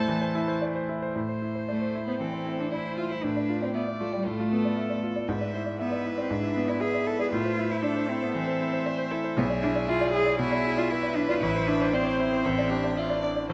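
Dramatic and restless, this quick classical-period movement for piano quartet moves in 4/4 with a rubato feel, heard as a short cut from a longer piece. A bright, brilliant concert grand piano carries the accompaniment, up front and present with a deep bass, and it is the most prominent part. Above it, one violin sings the melody with a focused, vibrato-rich tone, reaching up to A5, while a second violin and a cello shape supporting lines with smooth, even bowing. The cello adds only light vibrato and falls silent at 13.2 seconds, just before the other parts finish at 13.5 seconds. The harmony circles through A minor and its dominant before settling on a bare D5 chord over A, and close, detailed microphones capture the ensemble within a moderate scoring-stage reverb.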